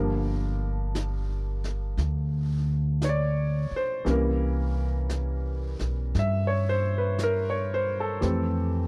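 A jazz ballad at a slow 58 BPM in 4/4, this short excerpt carries a late-night, romantic mood with a swung eighth-note feel. A clear concert grand piano, worn and deep in the bass, sits up front and supplies the accompaniment across the full 8.9 seconds. Alongside it, a woody, dark upright bass played pizzicato on steel strings holds down the low end, also close and present. A jazz brush kit with a medium-tuned snare enters at 0.9 seconds, its brushed snare and hi-hat sitting low in the mix with a natural studio-room sound. The harmony moves from Gm7 through C7b9 to a resolution on Fmaj9 at 8.2 seconds, all captured in a dry, close recording with a 1970s studio character.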